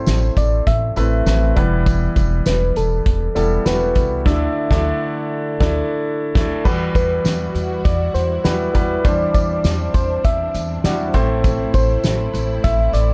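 A clear, intimate concert grand piano with audible action noise and a round, gentle FM synth lead carrying the melody with chorus and vibrato open this uplifting, hopeful piano-driven pop passage at 100 BPM. A woody, thumpy pizzicato upright bass and an up-front, roomy soft-mallet drum kit with a fat snare and punchy kick join, a jingly tambourine sits in the background, and the band hits an accent from 4.3 s. At 6.7 s a bowed string section with soft attack and a smooth top enters behind them on sustained chords, all within a dark, reverberant production.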